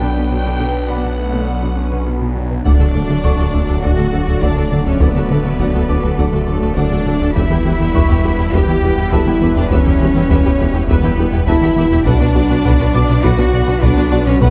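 A dark, warm production set in a moderate scoring-stage reverb opens this cut from a longer hybrid orchestral and electronic film score, vast and relentless at 102 BPM in a straight 4/4. From the start, a clear, intense violin section carries the melody in the background over an expressive studio viola section, a rich cello section, a slow-attack analog pad with chorus, a juicy, squelchy blip pluck playing arpeggios, and a swirling, thick detuned saw bass thickened by a phaser. A baby grand piano adds delayed texture high above, set back in the mix. At 2.7 seconds the arrangement grows heavy as a taiko ensemble with saturated, compressed hits, a rubbery, hollow square bass riff, a dark French horn section on sustained chords, a smooth second violin line, a very quiet, focused double bass section and a roomy, distant tuba all join. The harmony moves from B minor through D and E minor before returning to B minor at 12.1 seconds.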